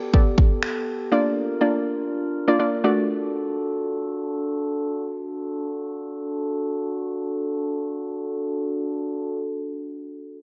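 Dance-pop at 122 BPM in D major, carefree and summery, moving through Gadd9/B, Bb and D over a brief excerpt cut from a longer piece. A glassy, ethereal glass harmonica holds sustained chords with a slow attack, pumped by sidechain and low-passed, while a soft, round pluck with chorus and a dark, decaying tone adds accompaniment until 3.0 s. A punchy, tape-tinged house drum kit of kick and finger snaps sounds only briefly at the start, under light reverb, a filter sweep during the first 5.1 s, and a mellow top end.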